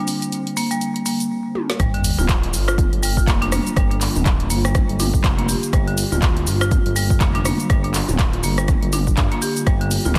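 Dense and heavily limited with a light digital ambience, this hypnotic, earthy afro house excerpt at 122 BPM in G minor opens with filter sweeps on the deep house drum kit, with its woody snare, dark hats, handclaps, rim click, shaker and toms, and on the hard-mallet marimba arpeggios with delay, all over a mellow, airy pad in the background; then, after a drum fill, the drop lands at 1.8 seconds, bringing in a punchy electronic kick, a smooth, nasal synth bass and a very quiet sub drop impact, with sidechain pumping on the pad, marimba and bass.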